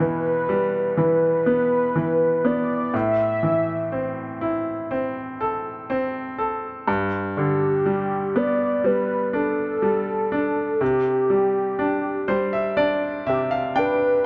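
A tender, emotional pop ballad in C major opens with a velvety synth lead carrying the melody over a bright concert grand piano. At a slow 61 BPM in a straight 4/4, the piano supplies the accompaniment with a brilliant, up-front tone, deep bass and short sustain, moving through Em, Am, G and Csus2. The lead, built from detuned sawtooth and triangle voices in unison, has a smooth, sustained sound with a fast attack, chorus, vibrato and portamento, sitting in a compact register between G4 and E5. From 11.8 seconds the grand piano plays a fill that runs to the end of this excerpt at 14.3 seconds. Light reverb gives the mix a soft sense of space, and the top end is rolled off above about 7.9 kHz.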